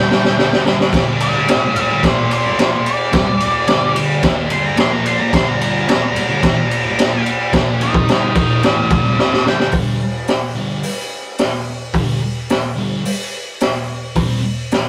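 Gritty and swaggering, this garage rock cut from a longer piece stomps along at 109 BPM in G minor, a straight 4/4 tuned slightly flat to A4 = 438 Hz. After a quick drum fill, a dark octave-fuzz lead guitar takes a picked solo from 0.9 to 9.7 seconds over a thick, double-tracked fuzz guitar riff. Up front, the saturated garage drum kit carries a high-tuned snare and a boomy kick with a rolled-off top, all caught in a rough rehearsal-room recording with light reverb.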